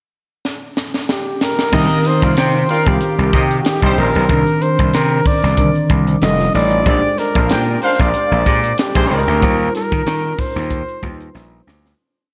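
A crisp sixteenth-note groove from a tight, high-tuned funk drum kit opens this bittersweet, slick 1980s jazz-funk pop piece in C minor at 94 BPM with a light swing; the warm flugelhorn enters at 1.1 seconds, up front with light vibrato and delay, singing motif-based phrases, while from 1.7 seconds a gritty, overdriven slap bass drives an agile syncopated line with chromatic approach notes, a worn, slightly out-of-tune tine electric piano bathed in lush chorus holds drop-2 chords moving from Cm9 through F9 and Bb13 to Eb69, and a mellow horn section with delay plays short octave-doubled riffs, the whole mix soaked in dreamy plate reverb until the fade-out that begins at 9.4 seconds.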